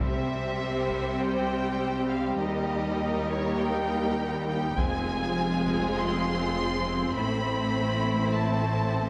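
This epic, heroic orchestral film score excerpt opens with everything at once: hard-stick taiko hits, dry and close, over lush bowed strings at a straight 101 BPM in 4/4. The violin section carries the melody high above a focused second violin line and vibrato-rich violas, while a mellow French horn section holds background chords. Distant cellos and double basses anchor the low end through a C, Eb, F minor and A minor progression, with the taiko returning at 4.8 s under a moderate scoring-stage reverb.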